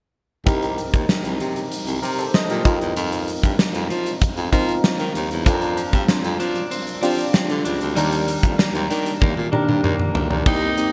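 A huge, bright arena drum kit with gated reverb, a fat snare and punchy kick opens this nostalgic, urgent 1980s-style pop excerpt in C minor at 96 BPM, joined from the start by soft, round electric-piano-like synth keys with chorus and a breathy baritone saxophone carrying the bass line with vibrato through Cm7, F7sus4, Bbadd9/F and Ebmaj7. At 5.5 seconds a clean, direct-recorded electric guitar riff slips in behind them with subtle chorus and delay, and a drum fill from 9.2 seconds leads to a raspy, gritty alto saxophone entering up front at 10.5 seconds. The bright digital production sits in a lush hall reverb.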